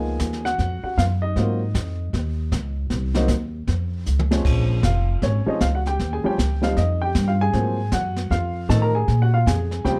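A woody, thumpy pizzicato upright bass sits up front in this swinging jazz piano trio passage, alongside a mellow, intimate baby grand carrying the melody with audible action noise and short sustain, while a brush kit with dark cymbals and a boomy kick comes in at 0.2 seconds and plays a short fill at 4.1 seconds, all in a dark, warm production with light reverb.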